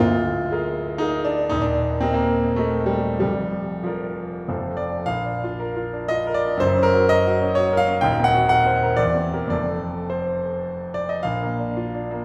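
Passionate and lyrical, this romantic character piece for solo piano moves in a rubato 3/4 between 91 and 132 BPM in Bb major, tuned to A4 = 444 Hz. The bright concert grand sits up front with a brilliant treble and deep bass, its natural tone spanning D1 to G5. Its opening phrase gives way at 5.1 seconds to a second idea that turns through Gb and a C7/E before settling back on Bb, all bathed in a wet recital hall reverb in this brief cut from a longer work.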